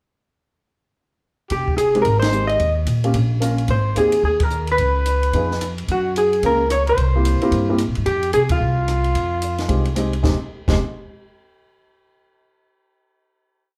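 Small-group swing and bop jazz in F minor, this short, complete piece moves at a brisk 220 BPM in 4/4 with a swung eighth-note feel and a cool, late-night mood. A vintage hollow-body electric guitar, dark and clean with plate reverb, carries a picked, motif-based melody built from period phrases, while a warm trumpet with vibrato and a soft attack shadows it as a second line with octave doubling. Underneath, a woody pizzicato upright bass sits up front in a two-feel, and a compact cocktail kit, dry and natural with dark cymbals, a high-tuned snare and a punchy kick, keeps a stick ride pattern. A mellow baby grand piano enters at 1.9 seconds with intimate, syncopated comping in rootless voicings, its short sustain and audible action noise giving it a close, human presence. The band hits accents together at 2.2, 4.4 and 8.5 seconds as the harmony moves from Fm7 through Abmaj7, Db7, Gbmaj7 and C7 back to Fm7, before a final chord rings out. 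The whole group is heard from further back in a large studio with a moderate reverb.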